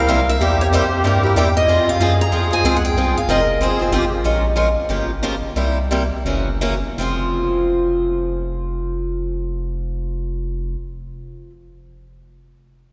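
Virtuosic and swinging, this short cut from a longer jazz manouche string swing piece opens with a bright, parlour-sized steel-string guitar carrying the melody over a reedy, shimmering musette accordion second line, both finished by 4.2 seconds. Underneath, a boxy, up-front swing guitar keeps picking the accompaniment until 11.5 seconds, alongside a rubbery, hollow square-wave bass with a dark, bouncy pluck, while the music slows down from 4.2 to 7.0 seconds. A wet cathedral reverb gives the ensemble the sound of a church or concert hall.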